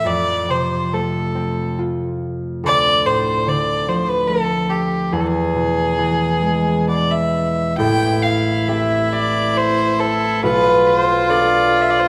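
Haunting and mournful, this Celtic slow air excerpt moves in a rubato 3/4 around 64-74 BPM in A minor, with a clear, biting fiddle carrying the melody up front, its bowed tone nasal and earthy with light vibrato. A mellow concert harp is fingerpicked beneath it from the start, its ringing low-to-middle notes following chords that move from F through Dm to E. At 7.8 s a rich, pure viola enters close by with a soft attack and a floating bowed second line, as the harmony turns to Am7 and Bm7b5, all wrapped in the wet reverb of a recital hall.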